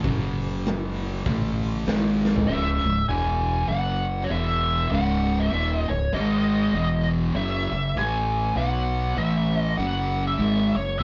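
A double-tracked fuzz guitar riff opens this heavy, brooding stretch of stoner and doom metal, joined from the start by a growling, overdriven fingered bass that sits up front with a punchy, amped edge, and a big acoustic rock kit with a punchy kick and a medium-tuned snare. The groove has a loose swing on the eighth notes, and the compressed, distorted rhythm guitar carries the low riff through a churning run of power chords. The drums play only through the opening bars, closing with a fill that ends at 2.5 seconds. At that point a dark, fuzzed lead guitar with wah takes over the upper register, laying a high melody over the riff and bass until the cut ends at 11.0 seconds. The band sounds as if it is playing live in one room with moderate studio reverb, and the cassette tape rounds off the top end into a murky, smoky haze.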